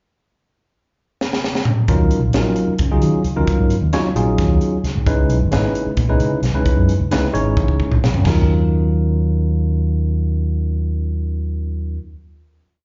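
A dark, round fingered electric bass sits up front with an amped, punchy syncopated riff in this driving, intense electric jazz fusion piece in 7/8, heard as a live gig through the venue's PA with club reverb and a dulled top end. A crisp acoustic drum kit with a high-tuned snare, tight kick, hi-hat, splash cymbal and toms opens with a fill at 1.2 seconds in a small, pumping room. A clean tine electric piano enters with the bass at 1.9 seconds, playing syncopated drop2 chord stabs through its built-in speakers, coated in plate reverb and slapback echo, as the groove moves between Ebm9 and Dbm9 until a final Ebm9 chord arrives at 8.2 seconds, which the piano and bass hold after the drums stop at 8.4 seconds.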